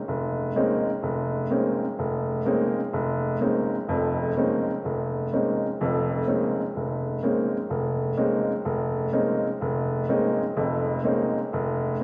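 A clear, open baby grand piano sits up front in a wet church acoustic, its long sustain blooming into a reverb tail of about 2.8 seconds. This short jazz excerpt is a solo piano piece in Bb minor at 126 BPM with a swung 4/4 feel, resting on a single Bbm11 harmony and ranging from the deep low register up to the middle of the keyboard. The mood is intense and searching, with the piano playing alone from 0.1 to 12.0 seconds.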